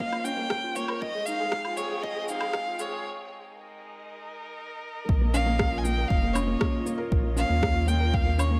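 A rich, focused violin carries the melody up front in this short cut of intimate, hypnotic piano and strings electronica, moving at 118 BPM in Bb dorian. Beneath it, a felt-muted upright piano plays a soft, mellow riff, while a veiled, con sordino string quartet holds dark sustained chords with a sidechain pump, with a filter sweep on the quartet through the build-up from 0.0 to 5.1 seconds. An overdriven, deep electronic kick and a layered, overdriven mix of electronic woodblock, shaker and rim click give the beat a produced, gritty edge, set in studio reverb. A break from 3.1 seconds leads into the drop at 5.1 seconds, where a round sine sub bass enters and pumps beneath the harmony as the chords settle on Bb minor. The whole mix sits in light reverb with a high-pass filter, keeping the feel close and chamber-like.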